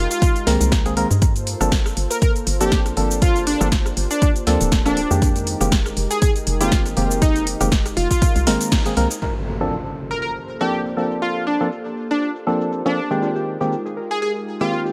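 A moody, smooth deep house excerpt at 120 BPM in G phrygian, built on a light digital ambience, with a deep, overdriven kick up front and a layered kit of punchy snare, metallic filtered hats, cabasa, rim click and crash. A hollow, bouncy FM bass with tube saturation and an organ-like percussive stab pump against the kick, while a mellow sawtooth pad sits in the background and a bright, catchy unison lead carries the melody through chorus and delay over shifting Fm11 and Gm11 chords. At 8.7 seconds the band hits an accent, the bass drops out by 9.2 seconds as an electronic impact opens the second section, and at 13.2 seconds a warbling, lo-fi pluck adds dusty arpeggios.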